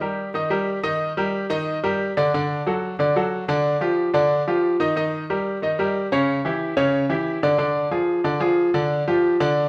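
A brilliant grand piano plays alone through this driving, fiery Latin passage, taken from a longer piece, with a polished tone and short sustain across a range from Db3 to Eb5. At 182 BPM in a straight 4/4, it states the same section twice, the second pass beginning at 5.0 seconds, moving through Eb, Ebmaj7 and D before darker Eb7, C#dim and Ddim harmonies, each half closing on G5. A wet, large studio reverb with a 1.0 second decay places the listener further back in the room.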